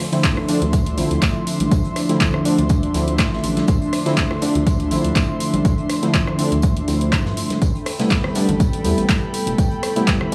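An airy, breathy pad opens this deep house passage, holding detuned, chorused chords with a slow attack and a touch of 12-bit sampler grit while sidechain pumping makes it breathe against the beat. Almost at once, a very quiet, warbling tape-like pad adds a nostalgic lo-fi haze, and mellow analog keys begin sounding short, chorused stabs that trail off through an analog delay. The groove settles at 122 BPM in 4/4 with a light 16th-note swing: a punchy, tape-toned electronic kick sits up front, while an analog drum machine supplies handclaps, hi-hat and rim click. Beneath it, an unplugged drum kit in the background adds filtered hi-hat, snare and tambourine played with bundle sticks, and very quiet, close, ringing congas enter at 0.4 seconds. A round, dark analog bass arrives at 0.6 seconds, pumping with the sidechain, as the harmony moves from Dm9 to Am9 at 7.6 seconds in D dorian. The hypnotic mood is framed by a gritty small-room sound with a studio reverb.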